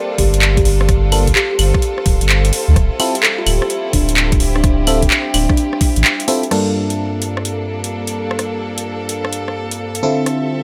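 Glassy, bell-like FM electric piano stabs with chorus, phaser and delay enter at 1.1 s and sit up front in this soulful, late-night two-step UK garage cut, swung on the sixteenths and moving between Gm9 and Dm9. A thick, saturated sub bass and a knocking, tape-tinged electronic kick drive the opening, the bass stopping at 6.0 s, while an overdriven garage kit of metallic hi-hats, claves, handclaps, rim clicks and crash carries on, and a woody kalimba melody rings through digital delay until 5.7 s. A smooth, bowed chamber violin section holds rich chords over a dark, detuned ambient pad in the background, both pumping against the sidechain, under a light reverb.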